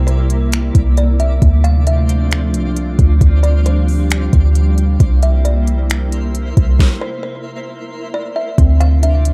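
A dark, close-sounding mix with little room ambience opens this short, melancholic and hazy slice of atmospheric cloud-rap, moving at 134 BPM in a half-time 4/4 feel in D minor. A deep, boomy 808-style bass with a clean sine tone sits up front alongside a smooth R&B drum kit of soft kick, deep snare, smooth hi-hats and finger snaps, which enters at 0.1 seconds. Above them, a glassy, ethereal FM pad holds sustained chords with a warbling vintage character, coloured by ensemble chorus, its own reverb and sidechain pumping. A woody, hollow kalimba carries the melody through a low-pass filter and tape echo, while a faint twinkling granular texture adds octave-up shimmer and sparkle bathed in reverb. The harmony moves between C7 and Dm7, a stop arrives between 6.8 and 8.6 seconds, and a soft, round pluck with chorus and tape echo slips in at 8.6 seconds with brief arpeggios.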